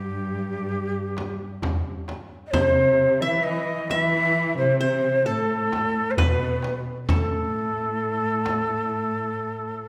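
A breathy, end-blown ney carries the melody up front, its reed-cane tone soft in attack, touched with vibrato and slightly unsteady, as if heard from a little distance. This is a soulful, longing cut from a longer Turkish makam ensemble piece in A makam nikriz, moving at 132 BPM in eighths across a straight 10/8, tuned to A4 = 441 Hz. Beneath it, a dark studio cello section holds a woody, bowed second line with a smooth top and its own vibrato, while a qanun played with fingerpicks adds a bright-edged shimmer of triple strings in the same register as the ney, sitting lower in the mix. A crisp, deep metal-shell darbuka enters at 0.3 seconds from the background, and a frame drum struck with hard hands joins at 1.2 seconds and drops out at 8.7 seconds. The ensemble sits in a wet recital hall reverb with a 1.5-second decay that gives the whole passage a spacious glow.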